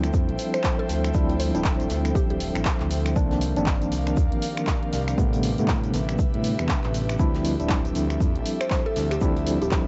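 A warm, deep deep house excerpt at 119 BPM in D minor, moving with a swung 4/4 feel over a Dm11, Cm11 and Am11 progression. A punchy, tape-softened electronic kick sits up front, joined by an analog drum machine playing cabasa, finger snaps, handclaps and hi-hat, while a very quiet acoustic studio kit adds snare, shaker and hi-hat from a small room. A smooth, gliding sawtooth-and-triangle synth bass with portamento and vibrato pumps against the kick alongside a worn, slightly out-of-tune tine electric piano, whose stabs carry tremolo and analog delay through a combo amp. An airy, breathy pad with slow attack and long release holds sustained chords under chorus and sidechain pumping. A woody, round FM pluck melody appears from 0.5 to 2.4 seconds and returns at 8.6 seconds, dressed in chorus, phaser and tape echo. The sound is dry and lo-fi, a home cassette recording with the top end rolled off.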